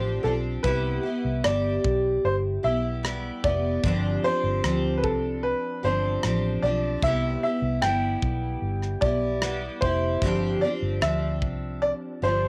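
A straight, unhurried 4/4 pulse carries this sunny, easy-going acoustic pop excerpt, cut from a longer piece. A modern studio drum kit, recorded in a small room with a tight kick, plays only kick drum and rim click from 0.6 s to 11.6 s. Underneath, a vintage electric bass, fingered and foam-muted, sits dark, round and punchy up front. A bright, full-bodied jumbo steel-string guitar, picked and double-tracked, supplies the accompaniment, while a woody, somewhat boxy upright piano carries the melody. The harmony sways between G7sus4 and Cmaj7, and the tape coloring on the piano, guitar and drums, along with the home-recorded ambience, gives the whole sound a homespun cassette character.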